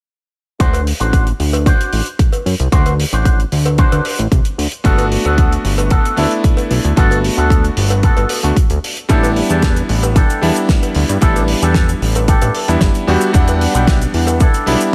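An excerpt of sunny, feel-good nu-disco at 113 BPM opens at 0.6 seconds with a punchy, up-front electronic kick, a fat detuned sawtooth bass with tube saturation, a dry damped 70s drum kit with cabasa, hi-hat and fat snare, and a twangy, clean envelope-filtered electric guitar riff with lush chorus and delay over D7. A background cowbell joins a moment later, before a clangy, cutting electric grand piano with sidechain pumping and delay enters at 4.8 seconds as the chords move through Gmaj9, A7sus4 and Em7.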